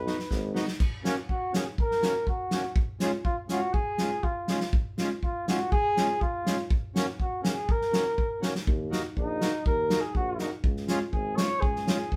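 A short drum fill on an acoustic kit, played with bundle sticks, opens this bouncy, festive alpine folk dance-band piece at 122 BPM in 2/4 and F# major, with the tuba sounding only briefly before the fill ends at 0.8 seconds. An up-front flugelhorn carries the melody with a mellow, soft-attacked tone and light vibrato, over a reedy, smooth accordion accompaniment and a tight kick, medium-tuned snare and dark cymbals. The warm, distant tuba returns on the bass line at 8.7 seconds, and the whole band plays live together in one room with a moderate studio reverb.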